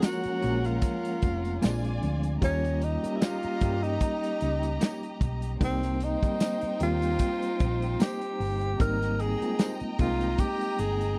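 Romantic and smooth, this short cut from a longer piece is lush 1970s-style soul at 75 BPM in 4/4, with a light sixteenth-note swing, set in Ab major. A breathy tenor saxophone carries the melody up front, its soft-attack notes scooped and shaded with vibrato in a jazz manner, while a distant bowed violin section adds an expressive second line. An overdriven, reedy electric piano played through a combo amp supplies gritty accompaniment with a fast tremolo. A dark, clean, compressed electric guitar plays a fingered riff in the background alongside a jingly, bright tambourine, and both stop at 9.8 s. A round, amped hollow-body bass enters up front at 0.3 s, and an acoustic soul kit with a medium-tuned snare, tight kick, pumping room sound and rolled-off top plays hi-hat, kick and snare. The chords move from Gbmaj7 through Bb7, Eb7 and Cm7 to Abmaj9, and the sound stays dry, with little reverb.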